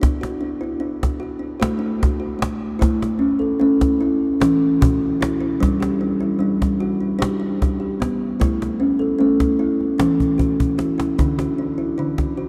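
Gentle and hypnotic, this meditative world piece in 7/8, cut from a longer work, sets a dark, woody, ringing kalimba playing arpeggios through a diffuse ambient delay against a close, dry cajon with faint snares, both up front in a vast, echoing cathedral reverb, with a drum fill from 10.2 to 11.2 seconds as the chords move from D through A and G back to D.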